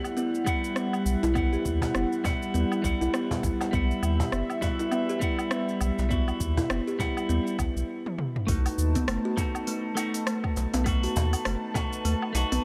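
Organic downtempo in a meditative, hypnotic mood at 101 BPM with a swung 16th-note feel: a woody, thumb-plucked kalimba plays short arpeggios through tape echo over a mellow, detuned analog pad with chorus and sidechain pumping, while a bright, twangy clean electric guitar adds compressed, picked accompaniment with tape echo and pumping of its own. A deep, round sine sub bass sits up front, an electronic kick and a smooth-hatted deep house kit of cabasa, rim click, toms and woodblock move alongside a snappy, soft-handed cajon, and all of it is set in light digital ambience until a stop at 7.9 s and a drum fill carry the harmony from Emadd9 to B7 at 8.5 s in this excerpt.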